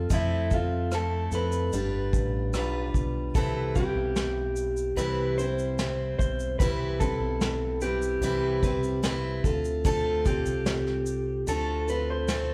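A relaxed, straight 4/4 pulse at 74 BPM sets an easy-going, carefree acoustic pop mood in C major, taken from a longer piece. Brushes on a vintage drum kit, with a punchy kick, a medium-tuned snare, rim click and shaker, come in at 0.1 s and sit up front with a rolled-off top. A round, dark fingered electric bass stays low and punchy beneath a bright, full-bodied steel-string acoustic guitar whose fresh strings ring clearly in its accompaniment. Carrying the melody between E4 and C5 is an electric guitar through a small old amp, slightly broken-up, compressed and lo-fi in character. The band plays live together in one large studio with moderate reverb, moving from Fmaj7 and G7 into a long stretch on Cmaj7 from 3.4 s before shifting to Dm7 at 9.4 s.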